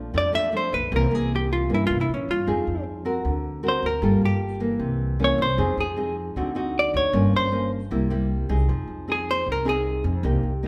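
A short, melancholic bossa nova fragment in F minor at 154 BPM opens with a dark, fingerpicked nylon-string guitar, its finger squeaks audible, over a woody, pizzicato upright bass. From 0.2 seconds a clean, compressed hollow-body jazz guitar carries the smooth melody up front, sitting a little louder than the accompaniment and soloing through a progression of rich jazz chords that moves from Bbmaj7 and C7b9 to Fm7. The trio plays live together in a large studio, bathed in lush reverb that blooms around the instruments until the cut at 10.7 seconds.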